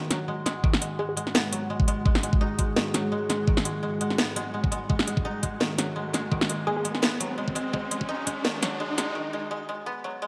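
Half-time drum and bass with a spacious, dark mood, this build-up excerpt opens on a mellow, woody koto playing arpeggios through a low-pass filter and tape echo, beside a bright, pulsing gated texture in the background. A deep, moody ambient pad with chorus and sidechain pumping holds sustained chords from 0.9 seconds, while up-front drums bring a knocking electronic kick, a cracking snare and metallic hats, and a hollow square pluck flickers briefly on a single note. Filter sweeps run across the pad and pluck as a background riser climbs from 2.0 seconds, then everything drops away at 9.2 seconds into a short break where the koto rings on alone in a lush hall reverb.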